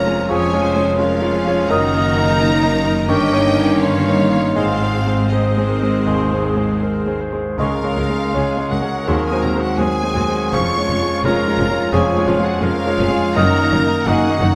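A wet recital-hall reverb surrounds this lyrical, passionate romantic passage for piano and orchestra, taken from a longer piece and moving with rubato at 78-89 BPM in 4/4 in D-flat major. An up-front concert grand with a deep bass and long sustain carries the melody alongside a lush, focused violin section, while a distant, intense second violin section and a roomy, mellow cor anglais add second lines over a smooth bed of violas, a tight, very quiet French horn section, close-sounding cellos and an even double bass section. From 0.3 s until about 13.6 s, a dark, soft-edged clarinet, an airy, hollow flute and a gently vibrato-laden bassoon join in the background.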